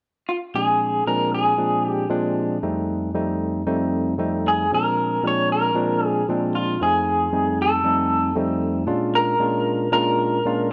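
An electric guitar through a small old amp carries the melody from 0.3 seconds, its slightly broken-up, lo-fi tone sitting up front with tremolo and slapback echo. This rollicking, gritty blues fragment in a straight 4/4 is backed by a bright, barky tine electric piano, clean and direct, that enters at 0.5 seconds and moves between Bb7 and F7 before landing on a Bb7#9 at 8.9 seconds. Light reverb surrounds the pair in this short cut from a longer piece.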